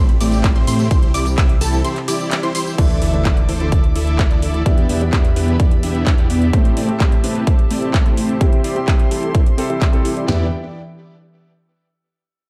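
Festival progressive house at 128 BPM in E minor, anthemic and euphoric, this excerpt opens on a drop where a huge, thick supersaw riff with cassette-tape grit, a filter and delay pumps over dark, floating sustained strings, a menacing detuned saw bass and a lush unison pluck arpeggio that stops at 2.8 seconds. At that point a very quiet impact lands, a clear concert grand piano enters with delayed accompaniment, and a filter sweep runs across the supersaw over chords of Dsus2, Em7, Am7 and C. A punchy, up-front big-room kick, snare and toms drive beneath metallic hats, claps, tambourine and cymbals from a pop kit, while the bass drops out at 6.5 seconds before returning at the very end, all in a dark production with light digital ambience.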